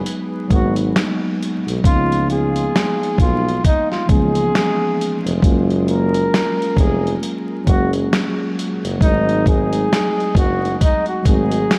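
A whispered, breathy flugelhorn carries the melody through a diffuse ambient delay in this nostalgic, hazy lo-fi hip hop excerpt at 67 BPM with swung 16ths in G# dorian, over a mellow tine electric piano with a cassette-tape tint, a gritty, compressed sampler-style kit with a thumpy kick and fat snare set up front in a large room, and a jazz-style tuba bass with scooped notes and light vibrato, all under light reverb and vinyl crackle as the chords move from G#m7 to C#13, F#maj9 and G#7b9.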